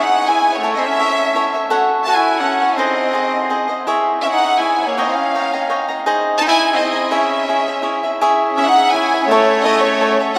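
A vast, echoing cathedral reverb bathes this festive, proud mariachi fragment, cut from a longer piece and moving briskly at 167 BPM in 3/4 in C# harmonic minor. Up front, a lush violin section carries the melody with vibrato, a soft attack and an expressive bowed tone, trailed by a tape echo. Beside it, a bright, crisp cavaquinho picks out the accompaniment, while a punchy trumpet in classical style plays a second line with vibrato from a distant, roomy position. At 8.2 seconds a second violin section enters in the background, bowed sul tasto to hold pure, floating sustained chords. The harmony circles through C#m, A, F#m, G# and D#7 before returning to C#m and landing on A.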